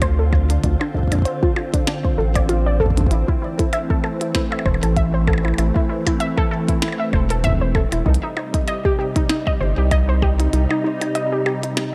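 A dark production with light reverb and a digital ambience frames this cerebral, glitchy IDM excerpt at 97 BPM in 4/4, its sixteenths lightly swung as the chords move from Dm7 to Am to Cm. Silky vintage string-machine chords drift through phaser and ensemble chorus beneath lo-fi, warbling pluck arpeggios carried by chorus and delay, while a round analog bass sits mellow and up front. A deep electronic kick anchors a quieter glitchy kit of tiny snare, clicky hats and percussion blips echoing through delay, until the kick drops out at 10.5 s and the bass falls away at 10.7 s, while the strings, pluck and kit carry on to 11.9 s.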